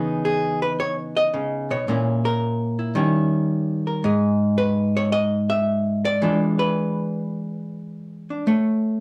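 Cool and swinging, this nine-second excerpt from a longer solo jazz piece moves at 110 BPM in 4/4 with a loose rubato feel, as a lone archtop guitar, miked and amplified, plays up front with a dark, clean, hollow-body tone, picked through chords from C#m9 to A#dim and D#7b9, a brief chordless stretch at 4.1 seconds, then E7b9 resolving to A at 8.5 seconds, all set in a small room with moderate studio reverb.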